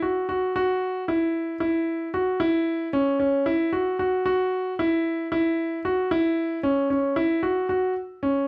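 This progressive instrumental piece is an intricate, driving fragment cut from a longer work, set in a straight 7/8 at 227 BPM counted in eighths. A solo concert grand piano plays alone from 0.0 to 8.5 s, staying between C#4 and F#4 with a smooth, vintage tone, deep bass and an up-front presence. A wet studio reverb with a short 0.6-second decay surrounds it.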